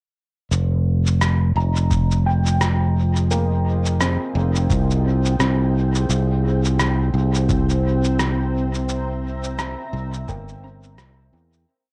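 A bright, punchy fingered electric bass sits up front, its long gliding notes given grit by tube saturation as it anchors this short ambient dub piece at 86 BPM in F minor, swinging gently on the sixteenths. Around it, a muffled, pitched-down electronic shaker and rim click tap out a sparse echoing beat through dub echo, joined from 1.9 seconds by a deep, tape-warm electronic kick that thuds softly and slowly. A felt-muted upright piano plays intimate arpeggios in two slow loops of unequal length drifting against each other, its thin, short-sustained tone dulled by a low-pass filter sweep and trailed by tape echo. A cloudy granular pad fades in underneath, its detuned sine tones and built-in reverb blurring slowly shifting chords that move from Fm7 to C7 at 6.1 seconds. The whole recording carries a homemade cassette grain and a spacious, meditative mood before fading out from 8.0 seconds.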